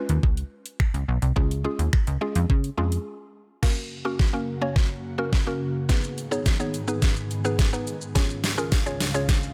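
Up front, a smooth electronic R&B drum kit with knocking kick, deep snare, metallic hats, finger snaps, shaker and crash drives this upbeat, carefree dance-pop excerpt in F# major at 106 BPM. It is joined by a woody, round mallet-like synth pluck with chorus and phaser, and a punchy, funky plucky analog bass that stops at 3.0 s before a short break. An ethereal airy pad of detuned sustained chords enters at 4.0 s, shortly after the build-up and drum fill begin at 3.6 s, and a barely audible jingly tambourine appears near the end, all over a C#, F#, G#m, C# progression.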